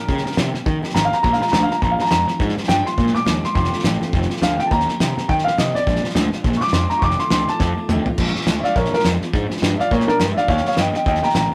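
A dark, woody upright piano opens this rowdy, retro rockabilly excerpt, taking a mellow solo with long sustain up front from the start while a bright, full-bodied steel-string acoustic guitar picks out the accompaniment in the background. At 208 BPM in 4/4 with a swung eighth-note feel, the tune sits in Bb mixolydian, cycling through Eb7, Bb7 and F7 dominant chords. A fuzz-drenched picked electric bass, round and punchy with overdrive, joins almost immediately alongside a cloth-damped, thuddy drum kit with a fat snare, tight kick and dark, rolled-off cymbals. A drum fill at 7.6 seconds leads out of the piano solo into a new section at 8.2 seconds, where the harmony lands on Bb7 before moving to Eb7. The whole has the rough feel of a rehearsal-room recording, with light reverb and tube saturation adding grit.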